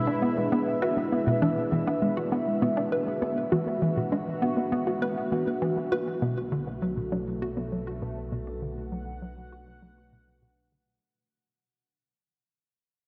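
Bathed in a vast, echoing cathedral reverb, this expansive, hypnotic stretch of sequencer-driven space music sets a bright, evolving sawtooth pad with shimmer reverb up front, alongside a lush, detuned unison pluck arpeggio and a nasal, bouncy square-wave pluck riff, both trailing delay as a filter sweeps the arpeggio sound, until a fat analog bass enters at 6.2 seconds with the shift from E7 to Bm7 and the passage fades out.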